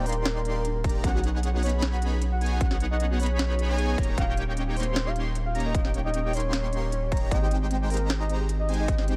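This bright, euphoric future bass excerpt opens with a saturated, thick sub bass, a smooth detuned supersaw riff with phaser, and an octave-layered synth lead whose round, chorused melody carries tremolo and tape echo, while an airy, dreamy lead spins arpeggios in the background through dub echo. A soft, gentle pluck adds further arpeggios alongside a trap kit of sharp snare and crisp hats, and at 0.8 seconds a punchy, overdriven electronic kick arrives up front. At 153 BPM in a half-time feel, the sidechain-pumped synths move through Ebmaj7, B69, Eb7 and Abmaj7 in a dry mix.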